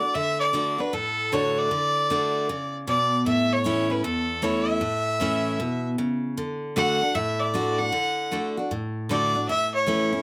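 A clear, nasal fiddle carries the melody from the first moment, bowed by a single player with a light vibrato and an earthy edge that sits up front yet carries a slightly distant air. Beneath it, a picked steel-string acoustic guitar provides the accompaniment, its jumbo body giving a bright, full-bodied tone that is also placed up front. This is easygoing, sunny country music with a swung eighth-note feel in 4/4, moving between D and A chords. Both instruments play together throughout the roughly 10-second fragment, which is cut from a longer piece. The close, detailed microphones and light reverb keep the sound intimate and present.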